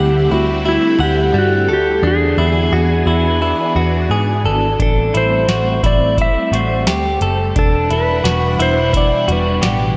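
A straight 4/4 pulse is carried at first by a dark, round, foam-muted electric bass sitting up front, until a booming analog drum machine joins at 4.8 s with a deep kick, tonal snare and metallic hi-hats. This hazy, haunting dream pop fragment, cut from a longer piece, moves through D9sus4, E7, Am7 and Em7. A bright, twangy electric guitar, recorded direct and compressed, picks arpeggios up front through analog chorus and digital delay. Alongside it, a vintage sawtooth string machine holds swirling, warbling chords with slow attacks and long releases, colored by ensemble chorus and phaser. The melody comes from a dark, clean lap steel guitar, played with a slide and volume swells, trailed by digital delay and slapback echo. A lush hall reverb gives the recording a big arena sound.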